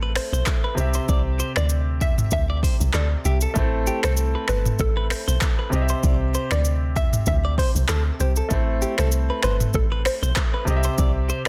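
A smooth, sultry afrobeats excerpt at 97 BPM opens on a deep, round log drum bass sitting up front with a percussive FM bite, alongside an intimate concert grand piano comping with audible action noise and a bright, twangy clean electric guitar riff coloured by phaser and digital delay, all circling between Amadd9 and C. At 0.2 seconds a hollow, detuned square-wave pluck carries the melody through chorus and delay until 10.2 seconds, while an electronic afro-pop kit with a deep kick, metallic hats, snaps, handclaps, rim clicks, shaker and toms drives a lightly swung 16th-note groove. The dense, heavily limited modern master sits in a digital ambience, with the tape-tinged drums pushed forward.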